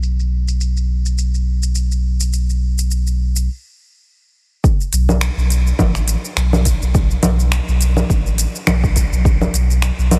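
A 4/4 groove with a gentle swing on the sixteenths drives this hypnotic, meditative slice of organic downtempo, cut from a longer piece. An organic electronic drum kit of congas, finger snaps, shaker and crisp hi-hat sits up front from the start, its hats and percussion softened by low-pass filtering and set in a studio ambience. Beneath it, a round, sine-like sub bass with a fast attack holds long, sustained notes in a deep low register, pumping against the sidechain. The groove breaks off at 3.5 seconds, and when it returns at 4.6 seconds a produced electronic kick adds a deep, forward thump until 9.4 seconds. Light reverb gives the whole mix a soft digital ambience.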